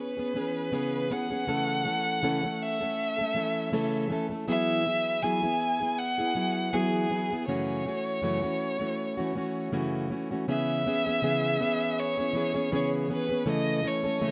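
Acoustic pop with a reflective, tender mood, this short cut from a longer piece pairs a single bowed violin carrying the melody with a fingerpicked, plugged-in jumbo steel-string guitar, both up front and playing together throughout its 14.3 seconds. The violin sounds rich and focused with vibrato and a touch of tape echo, while the guitar's fresh strings give a full-bodied accompaniment under a lightly swung feel. Moderate studio reverb places them in a modest room as the harmony moves from C#m7 through Eadd9 and F#m7 before a new section returns to C#m7 at 10.5 seconds.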